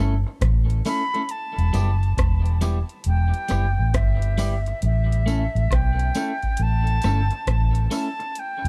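Roots reggae at a laid-back 68 BPM with a swung sixteenth feel and a serious mood, built on a dark, round, foam-muted electric bass and a booming analog drum machine with a deep kick, metallic hats, rim clicks and overdrive, both up front, while a bright, twangy clean electric guitar with tape echo carries the accompaniment over A and E minor, an airy, distant concert flute with vibrato and tape echo enters on the melody at 0.9 seconds, and a close, dry tambourine and woodblock sit in the background of this echo-heavy, dry-roomed fragment of a longer piece.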